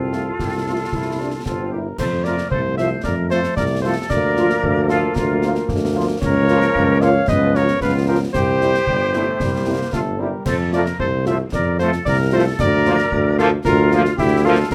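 Festive and proud, this military-style march for wind band strides along at 113 BPM in 2/4 in F major, with a dark, close-miked cornet carrying the melody up front over a present tuba bass, an airy small flute group on the second line, mellow French horns adding accompaniment and soft-attack trombones holding chords in the background, and concert snare, bass drum and dark clash cymbals sounding close and dry in a moderate studio reverb, moving through a borrowed Bbm/Db and Db7 before resolving to C at 8.3 seconds.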